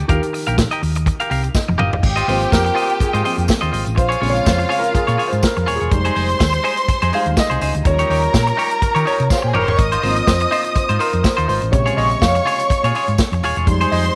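A dark, mellow concert grand piano with tube saturation takes a solo from 2.0 s in this sultry, glamorous disco excerpt at 124 BPM, backed by a bright, clean semi-hollow electric guitar, a round hollow-body electric bass, an up-front soul drum kit with dark cymbals and fills at 1.5 and 9.3 s, a jingly tambourine in the background, and a lush, bowed string section entering at 2.0 s, all in a light reverb over chords that move from Eb through Ab6, Bbm7, Fm7 and Eb7.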